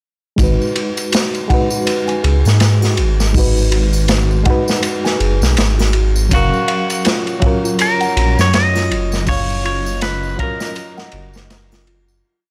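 A crunchy, looped breakbeat at 81 BPM in 4/4 sets a swung, brooding trip hop groove in G# dorian, its tight kick, medium-tuned snare, hi-hat, ride and dark cymbals saturated and rolled-off on top, sitting up front with edits in the loop. Beneath it, a dark detuned saw bass rumbles with a deep, beating dub-style line, while tambourine and triangle add loose percussion in the background. A reedy, worn electric piano holds spread chords with syncopated pushes over G#m7 and later F#maj7, coloured by harmonic tremolo, 12-bit sampler grit, tape echo and a filter sweep, as a delicate, tinkling music box runs a 16-step arpeggiated sequence through its own tape echo. At 6.3 seconds a bright, twangy clean electric guitar enters with a picked, compressed motif, and at 7.2 seconds a deep, moody ambient pad adds sustained chords with chorus and built-in reverb. The melancholic piece fades out from 8.3 seconds, captured in a dry, gritty hardware recording.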